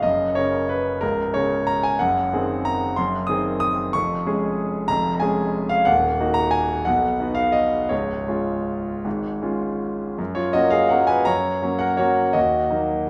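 A lilting 3/4 waltz pulse moves with a flexible, rubato feel, the tempo ranging between 152 and 196 BPM. This short classical excerpt in F# major, cut from a longer piece, has a graceful, elegant mood throughout. A solo concert grand piano carries everything, sounding brilliant and polished, with deep bass reaching down to C#1 and a treble extending up to D#6. The harmony passes from F# through G#7 over F#, C# over E#, D# minor, B and C# before settling back on F# as a new passage begins at 10.2 s, touching D# minor at 12.4 s. The piano sits present and up front in a recital hall whose moderate reverb, with a 1.5-second decay, gives each phrase a gentle glow.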